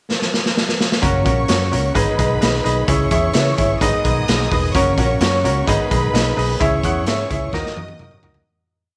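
A raw garage drum kit opens the piece alone with a fill from 0.1 s, its boomy kick, medium-tuned snare and gritty, saturated sound sitting up front in a small, pumping room as it drives a backbeat soul groove. This is uptempo 1960s-style soul at 129 BPM in G# minor, urgent and passionate in mood. At 1.0 s the full band enters for a pre-chorus. A bright, woody upright piano plays eighth-note chords in close voicing. A dark, round, foam-muted fingered electric bass adds a punchy, syncopated line with ghost notes and slides. Behind them, a very quiet percussive tonewheel organ holds a clean sustained pad with key click and a slow rotary speaker, while a lush, focused string section plays long high lines in the background. Moderate plate reverb surrounds the band, a second drum fill arrives at 7.5 s, and the piece fades out from 6.6 s.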